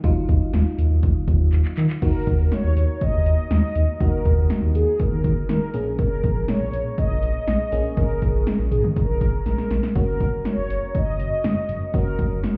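Synth-pop with a cool, driving mood, heard as a muffled excerpt through a wall amid club ambience, in a straight four-four pulse. A punchy analog drum machine sits up front with kick, snare, handclaps, hi-hat, toms and crash cymbal, its snare, claps and hats carrying a short room sound, and it plays fills at 1.5 and 9.5 seconds. Beneath it a smooth, dark synth bass built from sawtooth and square waves with a touch of ring modulation holds sustained notes, while a glassy FM electric piano with bell-like attacks and a faint noise layer decays softly through chorus and shimmer reverb in the background. At 2.0 seconds a mellow synth brass enters with the melody, round and full-bodied from detuned sawtooths, with a filter sweep, vibrato, chorus, shimmer reverb and tape echo. The harmony moves from Ebmadd9 to Ebm, then Bbm7 and finally Gb.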